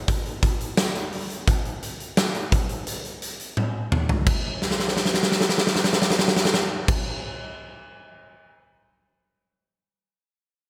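A huge, acoustic arena drum kit, with its punchy kick, medium-tuned snare, hi-hat, crash cymbal, tambourine and toms sitting up front under gated reverb in a big, natural room, drives this moody, nostalgic pop fragment at 86 BPM in a straight 4/4, entering at 0.1 seconds, breaking into drum fills at 3.6 and 4.6 seconds, and carrying a bright, 1980s-style digital sheen until it stops at 8.5 seconds.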